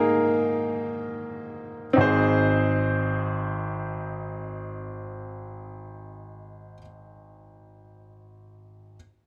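A polished, up-front baby grand piano sits in a moderate plate reverb, its clear, present tone carrying a tender, emotional pop feeling in Ab major. Played in free time as accompaniment across a span from Ab1 to C5, the piano slows over the opening 2.0 seconds on an Absus2 chord before settling onto Ab at 2.0 seconds. This brief excerpt, cut from a longer piece, ends at 9.0 seconds.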